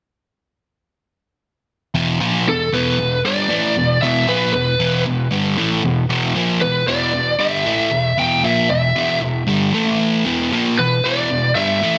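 A sludgy, double-tracked guitar riff opens at 1.9 s, overdriven and up front on a straight 116 BPM rock groove in E minor, tuned slightly sharp to A4 = 443 Hz. A picked lead guitar through a small cranked amp enters at 2.5 s with an overdriven, warm melody high above the low riff, while the harmony holds on Em before a brief shift to A5 at 9.7 s and back. The mood is heavy and aggressive, set in light digital ambience with a dense, heavily limited modern master, in a short cut from a longer piece.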